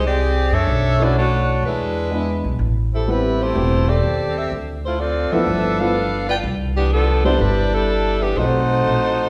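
A bright saxophone section carries the melody over a woody, thumpy upright bass in this brassy, swinging big band excerpt, moving at 125 BPM in C major with a smooth top and vibrato. A warm baby grand piano adds accompaniment from 1.0 seconds, moving through changes such as Bm11, E7, Dm9, G13 and Cmaj9 before a B7b9 near the close. The pizzicato gut-string bass and the saxophones sit up front, and a recital-hall reverb gives the whole a spacious, church-like bloom.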